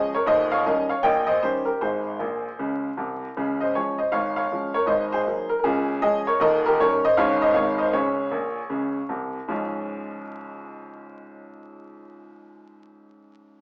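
A bright, woody upright piano plays solo stride jazz in Db major at a swinging 157 BPM, playful and exuberant, ranging from Eb1 to G5 with fills at 2.2 and 8.3 seconds over changes like Eb7, Ab9 and Db/Ab, set up front in a wet large-studio reverb with vinyl crackle and a small-speaker sound in this short cut from a longer piece.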